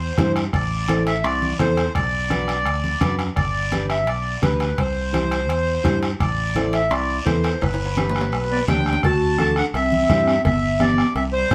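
A straight 4/4 cumbia pulse at 169 BPM drives this joyful, danceable clip in G major, built on a raspy guiro, a soft-beaten bombo, and thick-skinned congas and ringing metal-shell timbales and cowbell sitting in the background. A reedy, dark accordion carries the melody up front over a direct fingered electric bass and a clean, mellow electric guitar, all in a moderately reverberant room where the band plays live together. A drum fill arrives at 7.6 seconds, and at 8.5 seconds a breathy, intimate clarinet enters with vibrato and scooped notes, adding a jazz-style second line as the harmony moves to D at 9.0 seconds.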